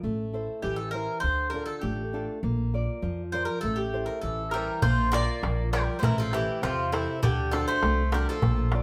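A live performance captured in one room and bathed in a wet studio reverb, this cut from a longer Greek folk piece has a cool, moody bouzouki-band sound, set in A phrygian at 100 BPM in a straight 2/4. From the start, a small-bodied, fingerpicked nylon-string guitar with fresh strings and an audible finger squeak sits up front beside a woody pizzicato upright bass, moving through Am, Dm and Bb. The lead Greek bouzouki enters at 0.6 seconds with the melody, its picked double strings giving a metallic, octave-doubled ring close to the listener. At 4.5 seconds a second bouzouki slips in lower and quieter with a bright supporting line, and at 4.8 seconds a crisp, close and dry metal-shell darbuka played with soft hands joins as the harmony turns to Bb, back to Am and finally to D.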